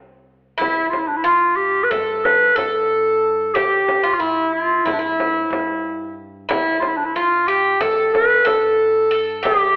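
Turkish makam ensemble music in a passionate, stately 9/8 at 183 BPM counted in eighths, where a distant, roomy clarinet carries the solo melody up front over a bright, metallic bouzouki second line with some octave-doubled strings, a deep, close frame drum, and a woody, growly pizzicato upright bass that starts alone before the others join at 0.6 seconds, all heard through a telephone-like filter and moderate recital hall reverb in a cut from a longer piece.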